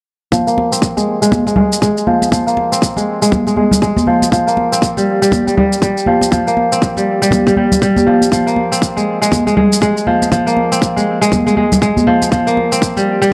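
Afro house at 120 BPM in F minor, earthy and warm, with a kora playing crisp, fingerpicked arpeggios up front, its sound pumping against the kick under a low-pass filter, a filter sweep and dub echo, while the chords move from Fm to Fsus24 and back before landing on C7sus4 at 12.3 seconds. A punchy, layered electronic kick with a tape-warm, small-room character anchors the swung 16th-note groove, joined by a produced shaker and close, ringing congas. The dark production sits in a lush hall reverb, and this short cut from a longer piece runs from 0.3 to 13.3 seconds.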